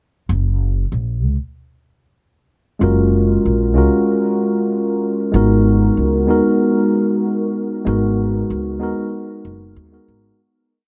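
Smooth and relaxed, this short sunset chillout piece rides a lightly swung groove. A woody, pizzicato upright bass with steel strings plays a dub-style line up front from 0.3 seconds, and a mellow, clean tine electric piano enters at 2.8 seconds with held drop2 chords and syncopated pushes, trailed by a diffuse ambient delay, moving from F#maj9 to G#m9. The dreamy mix is soaked in a huge ambient reverb, and the whole piece fades out from 7.0 seconds.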